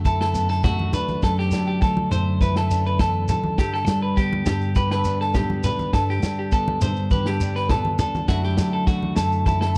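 A clean electric rhythm guitar and a fingered electric bass open this carefree, joyful highlife excerpt together, in G major at 102 BPM in a straight 4/4. The accompaniment guitar is bright, picked and twangy, sitting up front, while the amped bass gives a warm low end. From 0.1 seconds a second clean electric guitar plays arpeggios, compressed and scooped in tone, bathed in spring reverb and tape echo. A vintage drum kit drives the groove with a punchy kick and a medium-tuned snare, heard up front with a natural, rolled-off top. Low-tuned congas and distant, ringing agogo bells sit in the background, while a grainy, mellow shekere adds texture, over chords moving from Dadd9/F# to Gadd9 at 3.6 seconds and back at 8.3 seconds in a dry, close 1970s-style studio sound.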